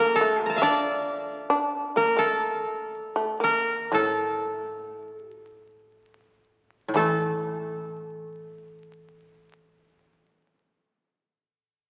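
Through the crackle of a very old 78 rpm record and the wet wash of a concert hall, this calm, austere traditional Japanese piece in free, rubato time slows over its first 7 seconds as an up-front, woody koto carries the melody over a buzzing, plectrum-plucked fretless shamisen second line, joined at 3.9 s by a mellow lower koto accompaniment, in a fragment cut from a longer work.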